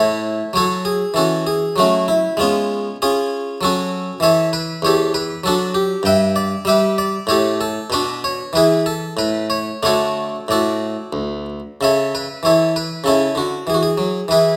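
A solo Italian-style harpsichord, plucked and round on a single set of strings, sits up front and spans D2 to G5 in this flowing, dance-like baroque-style suite movement, heard as an excerpt cut from a longer piece. It moves in 3/4 at about 97 BPM with a rubato feel, tuned to A4 = 435 Hz, and settles into D major from 4.2 s after opening on A and F#m harmonies. Close, detailed miking catches the instrument while a moderate recital-hall reverb adds space around it, and the passage returns to its opening material at 11.8 s before closing on E.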